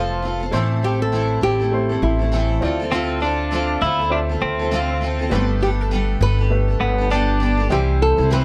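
Heartfelt and sunny, this short pop passage at 100 BPM with a swung 16th-note feel sets a fingerpicked flamenco guitar melody, marked by finger squeak, plate reverb and digital delay, over a full-bodied, double-tracked jumbo steel-string acoustic guitar up front, a woody upright piano in the background and a prominent pizzicato upright bass, while a clean, compressed twelve-string electric guitar adds a second line from 2.9 to 7.7 seconds as the chords move from F through Am, Dm7 and Gadd9 to C, all within a small room.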